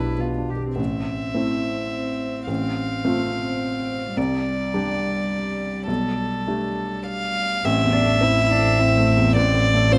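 A rich, floating solo violin carries the sul tasto melody in this fragile, longing neoclassical piece for piano and strings, which moves in a rubato 3/4 at 105 BPM in A minor. Beneath it sit a pure, smooth-topped cello second line and a mellow, intimate felt-muted upright piano with audible action noise, while an airy-bowed double bass plays only until 0.8 seconds and returns at 7.6 seconds, all set in a lightly reverberant room.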